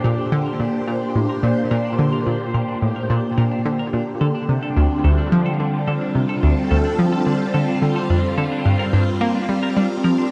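Dark, warm production soaked in a long plate reverb frames this cosmic, hypnotic slice of sequencer-driven space music, where a round, detuned analog pluck riff sits up front beside swirling, vintage string-machine chords thick with ensemble chorus and phaser, while a bright, twangy clean electric guitar fades in with tape-echoed arpeggios in the background over a Bb, Dm, Gm progression.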